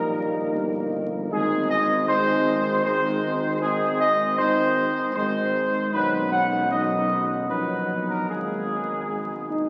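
Triumphant and regal, this short brass chorale from a longer classical work moves at a stately 78 BPM in 3/4, centered on Ab major. A mellow trumpet section carries the melody up front, singing with light vibrato yet sounding distant and roomy. Beneath it, a dark French horn section and a clear trombone section, the latter set in the background, hold sustained chords, while a mellow solo tuba with a soft attack and smooth top anchors the bass. The harmony moves from Eb/Bb to Ab at 1.3 seconds, shifts to Badd9 at 5.9 seconds, and settles on Absus2 at 8.3 seconds. A wet cathedral reverb gives the ensemble a vast, echoing space, and the sound of a very old 78 rpm record, complete with vinyl crackle, lends the whole passage an antique, faded patina.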